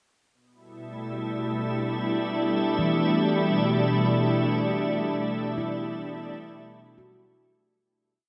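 Floating in free time, this weightless, luminous ambient piece opens with a soft, pure organ-like pad that sits up front, holding bright, slowly shifting chords thickened by ensemble chorus and a long, gentle release. At 2.8 s a ringing stainless-steel handpan enters in the background, played with the fingertips through analog delay, its arpeggios moving in two slow loops of unequal length that drift against each other. The dreamy mix is soaked in lush hall reverb, and the piece fades out from 4.1 s to 7.8 s.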